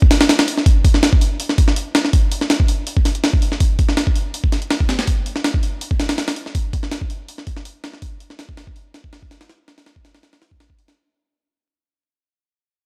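The recording has a dry, rough hardware character, coated in vinyl crackle and a light reverb that gives the room a faint sense of space. This is a short cut from a longer drum and bass piece in straight 4/4, and its mood is dark and atmospheric. A jungle sampler-style drum kit carries the whole passage from 0.0 to 11.0 seconds, placed up front in the mix with a touch of studio reverb. Its hits sound compressed, pitched up and gritty, with a thumpy kick, a medium-tuned snare and hi-hat. The entire passage fades out across its length, so the drums recede steadily into the crackle.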